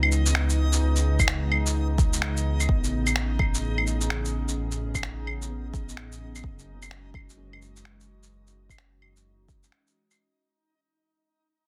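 Swung at 128 BPM in 4/4, this rainy, ghostly future garage excerpt sets sampler-style claves, shaker and finger snaps with a softly clipped snare over a deep, rumbling detuned saw bass, as a warbling lo-fi pad with chorus, phaser and 12-bit grit pumps through C#m9, Amaj9 and F#sus2, a reversed, granular swell shimmers above, a layered tape-warm kick arrives at 1.2 seconds, and muted felt-like keys drift in the background under a filter sweep and digital delay while the whole piece fades out.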